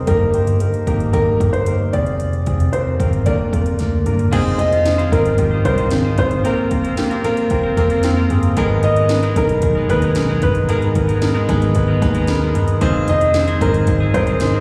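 A straight 4/4 pulse at 113 BPM drives this uplifting piano-driven pop passage, cut from a longer piece and tuned slightly flat to A4 = 436 Hz. A house drum kit with a punchy kick, cracking snare and metallic hats, overdriven and layered, runs from 0.1 s under a dark, round, foam-muted picked electric bass. A soft, felt-muted upright piano carries the melody with audible action noise and a boxy, intimate character, while a clear concert grand piano sits up front with deep bass, both touched by slapback echo. A drum fill at 3.8 s leads into the second section at 4.3 s, where a bright, twangy twelve-string electric guitar riff with slapback echo and a very quiet, breathy pad with chorus join over chords moving from Fm7 through Bbsus2 to Abmadd9. The grand piano adds fills around 7.8 s and again later, and the whole mix carries the light reverb and recital-hall air of a live gig heard through the venue's PA.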